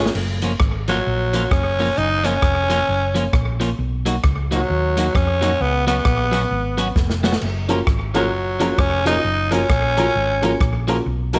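A bouncy, joyful ska groove swings its eighth notes at 132 BPM in 4/4, driven by a swinging big-band drum kit that sits up front with a punchy kick, a medium-tuned snare, rim clicks, hi-hat and crash, all carrying an airy, polished hall sound and a slapback echo. Underneath, a round, dark hollow-body short-scale electric bass holds the low end. An electric guitar at the edge of break-up plays picked, compressed accompaniment throughout. A growling tenor saxophone takes the solo melody from 0.9 seconds, raspy and breathy with light vibrato and its own slapback echo, standing present and gritty over the band. The harmony moves from F#maj7 through Bmaj7 and C#7sus4 back to F#maj7, and after a drum fill at 7.0 seconds, a mellow, worn, slightly detuned upright piano returns at 7.7 seconds with woody, boxy stabs, all in a small room with light reverb in this excerpt from a longer piece.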